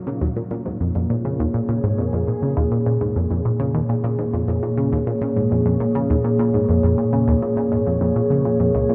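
Ambient, sequencer-driven space music in a straight 4/4, this expansive, cosmic fragment from a longer piece rests on a single sustained chord from a sweeping, resonant pad of detuned sawtooth and sine tones with a slow attack, filter swell and chorus, sitting up front from 0.0 s. Entering at 0.1 s, a tight, driving sequenced synth riff in the low register blends sawtooth and triangle waves with a filter pluck and a fast attack, its mellow tone colored by chorus, phaser and tape echo. A dark production and a huge, wet reverb with an 8.1-second decay surround both parts in a vast, enveloping space.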